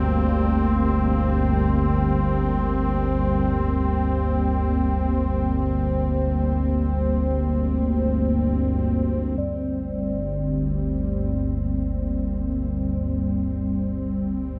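A cavernous cathedral reverb with a long decay surrounds this dark ambient drone, which unfolds in free time around G minor and feels unsettling and desolate. Up front, an analog drone holds the bottom between G1 and D2, its sawtooth, pulse and wave-folded tones blurred by chorus and shifting slowly over long attacks and releases. Above it, a sweeping resonant pad sustains a G minor chord in the G3 to C4 range, its detuned sawtooth voices bright and restless under a filter swell. Far in the background, a quartz singing bowl rings a pure D5 with slow beating, its boxy small-room tone lending a meditative glint. At 9.4 s a filter sweep begins to reshape the drone, carrying this excerpt into its closing stretch until the fragment cuts off at 14.6 s.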